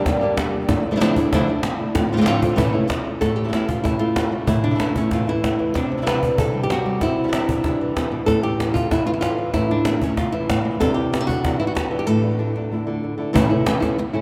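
Flamenco in a mournful, passionate vein, this excerpt sets a fingerpicked flamenco guitar melody up front over a second, thumb-plucked guitar playing stabs in the background with audible finger squeak, while a woody cajon with faint snares drives the 4/4 pulse, all bathed in the long, echoing reverb of a vast cathedral-like space as the chords move from Gm through Dmadd9 and F6 to a recurring A, ending on Asus4 resolving to A at 13.3 seconds.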